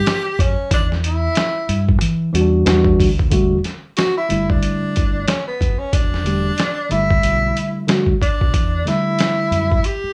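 Lightly reverberant studio ambience frames this smoky, nocturnal jazz-hop cut in E dorian at 92 BPM with a 16th-note swing, where a breathy, distant tenor saxophone with vibrato solos over gritty, pitched-down boom bap sampler drums with a thumpy kick, and a round, punchy fingered electric bass from the start, before a worn, slightly out-of-tune tine electric piano enters at 2.3 seconds to carry the chords through Em9 and Em11.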